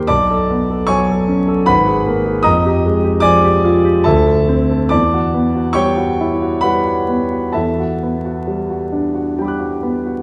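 In a rubato 3/4 drifting between 63 and 77 BPM, this hazy, dreamy fragment of impressionist solo piano features a concert grand with a warm tone, deep bass and long sustain, placed up front and spanning G#1 to F#6 as it moves through lush chords from Bm9 to G#m9, Fm9 and Dsus2 before settling on Em9 and Em11, all wrapped in a wet recital-hall reverb heard from further back in the room, with vinyl crackle across the 10.2-second excerpt.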